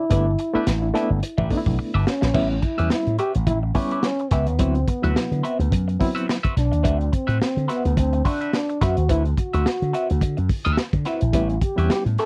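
Funk excerpt at 107 BPM with a sly sixteenth-note swing, where a dark, punchy trombone carries the melody with light vibrato and scooped notes over a gritty, up-front breakbeat kit with dark cymbals, a bright slap bass pushed through an envelope filter and tube saturation, a clean electric guitar treated with wah and phaser, and a barky, reedy electric piano whose overdriven stabs with fast tremolo drop out at 6.4 seconds and return at 11.3, all captured in a dry, close 1970s-style studio sound as the chords move from G6 to A9 after a drum fill at 1.8 seconds.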